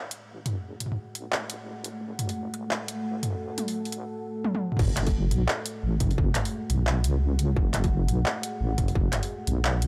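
Heavy and spacious, this half-time drum and bass excerpt at 173 BPM in F# minor opens on an F#madd9 chord, with a moody, warbling ambient pad sitting low in the mix under chorus, reverb and sidechain pumping. An overdriven, layered electronic drum kit with bright hats, crashes, handclaps and toms sits up front beside a deep, detuned sawtooth wobble bass. After a drum fill closes the build-up, the drop arrives at 4.8 seconds with a distorted, tape-tinged electronic kick that runs until 9.0 seconds, all within a dry, gritty hardware sound with transformer saturation.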